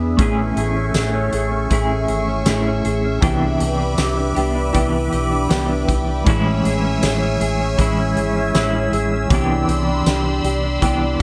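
Dream pop with a dreamy, ethereal mood, moving at 79 BPM in a straight 4/4 and centred on A major, this short excerpt is cut from a longer piece. A swirling, detuned analog pad holds sustained chords from the very start, its slow attack and long release coloured by phaser and chorus. Alongside it, a mellow, compressed electric guitar plays arpeggios through subtle chorus and tape echo, while a round, punchy hollow-body short-scale bass anchors the low end. At 0.2 seconds a clean semi-hollow electric guitar joins with accompaniment colored by tremolo and analog chorus. A loose indie drum kit enters at the same moment, its fat snare, punchy kick, hi-hat and tambourine sounding distant and roomy with a rolled-off top. The harmony alternates between Amaj7 and Cmaj9, all set in a moderate studio ambience.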